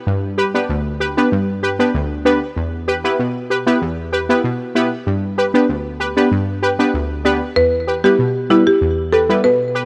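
Lightly reverberant studio ambience frames this sultry, bouncy dancehall fragment, where a punchy, nasal synth brass stab with chorus carries the G and E minor chords from the start, and a woody, buzzing marimba played with medium mallets joins it up front with the melody at 7.6 seconds.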